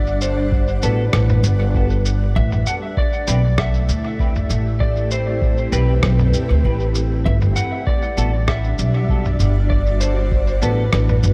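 A hazy digital ambience surrounds this meditative ambient dub fragment, cut from a longer piece and set in a gently swung 4/4. A woody, growly pizzicato upright bass sits up front, with a deep analog-style electronic kick beneath a muffled, pitched-down sampler kit of rim clicks, shaker and toms soaked in dub echo. A granular cloud pad holds slow-attack, detuned chords that blur into their own reverb, while a dark, slightly broken-up slide guitar played with fingerpicks carries the melody through trailing dub echo. From 0.8 seconds, a clean, twangy electric guitar adds stabs in the background, thickened by ensemble chorus and more echo. The harmony drifts from Gmaj7 to Am7 at 2.4 seconds and returns to Gmaj7 at 7.3 seconds.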